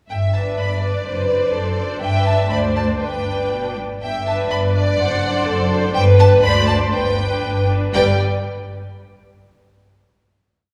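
Set in a rubato 2/4, this spirited, lively classical-period piece for string orchestra unfolds as two matching phrases and a final chord, with a lush violin section singing the melody over a second violin line of counter-melody and sustained chords, a distant, clear viola section entering at 0.3 s with syncopated chords in the rhythm of the tune, a close, focused cello section marking the beats with sustained bass, passing notes and answers at phrase ends, and a background double bass section doubling the bass line, inside a wet, reverberant hall sound.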